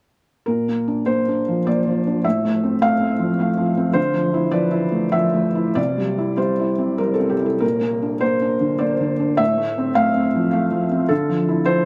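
Tender and intimate, this neoclassical minimalist piano piece, cut from a longer work, drifts in a rubato 3/4 as a solo felt-muted upright piano, mellow and vintage with a soft, up-front presence, plays from 0.5 to 11.9 seconds over Bb, F/A, Dmadd9 and C, touched by tape echo and a light reverb and captured by close, detailed microphones.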